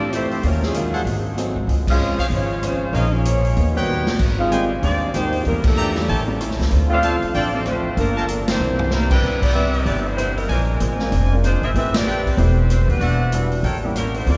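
A woody, thumpy pizzicato upright bass sits up front in this fragment of a brassy, swinging big band number, moving at 191 BPM in 4/4 with a light swing on the eighth notes. A mellow saxophone section carries the melody with vintage vibrato. A clear trombone section plays a second line until 9.1 s, and a clear trumpet section with vibrato adds stabs from 0.9 s. Underneath, a very quiet, boxy picked acoustic guitar with audible finger squeak keeps swing-style accompaniment, and an intimate upright piano with audible action noise and long sustain sits in the background. The acoustic drum kit has a punchy kick and medium-tuned snare across ride, hi-hat, crash, rim clicks and toms, with short fills and band accents punctuating the phrases. Chromatic, extended jazz harmony gives way to C major from 9.2 s, and the whole ensemble is bathed in a long, cavernous church-like reverb with a dulled top end.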